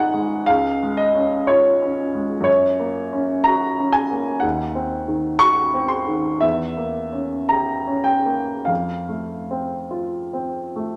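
Romantic classical nocturne for solo piano, this mournful, melancholic excerpt unfolds in a free rubato over 11.0 seconds, its open, up-front baby grand with short sustain ranging from deep bass to bright treble in a large, reverberant studio as the harmony drifts through diminished chords to settle on F.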